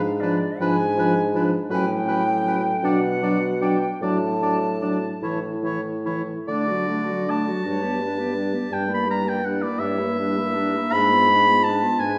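In a rubato 6/8 at roughly 47-57 BPM, this tender, serene slow romantic movement for wind quintet in D major drifts from a G#dim7 opening through Bm and A before settling onto D at 6.5 seconds and wandering back toward G#dim7 at 10.9 seconds. A pure, distant silver concert flute carries the melody with vibrato and a crisp attack, while a clear, up-front oboe sings a second line above the clarinet and a mellow, smooth-topped French horn, which fill in the accompaniment. Beneath them a dark, punchy bassoon anchors the bass, all framed by a wet recital hall reverb that places the listener further back in the room.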